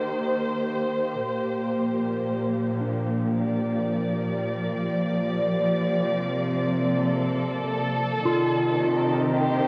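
Ambient and serene at 77 BPM in 3/4, tuned to A4 = 436 Hz, this spacious fragment from a longer piece drifts over Cm7 and Gm7/Bb chords as a veiled, con sordino string section holds bowed, vibrato-tinged chords up front, a mellow, clean electric guitar plays fingered arpeggios through tape echo in the background, and a dark cello section bowed sul tasto enters on a close, intimate bass at 5.9 s, all bathed in a lush hall reverb and the warbling pitch drift of worn cassette tape.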